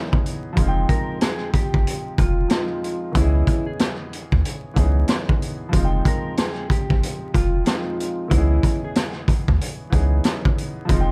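A gritty, boomy drum kit sits up front in this tough, reflective boom-bap hip-hop excerpt at 93 BPM, its kick, snare, rim click and hi-hat swinging over a round, deep analog bass that enters at 0.6 seconds. A boxy grand piano, filtered and tinged with cassette tape, comps through Dbm7 and Fm7 chords from the start, while a mellow, clean electric guitar carries a fingered melody with chorus and slapback echo from 0.9 to 9.1 seconds. The production is dark, with light reverb and vinyl crackle.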